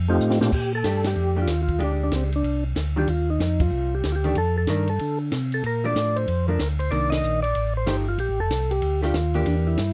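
Close, detailed and nearly reverb-free, this greasy, soulful soul jazz organ trio excerpt swings at 188 BPM in Bb major, with a round, mellow tonewheel organ bass showing key click and a slow rotary speaker up front beneath a percussive second-harmonic organ melody, a clean, picked and compressed hollow-body electric guitar accompanying, and a compact cocktail kit with punchy kick, high-tuned snare and dark cymbals that opens with a short fill at 0.2 seconds before band accents land at 1.0 and 3.6 seconds.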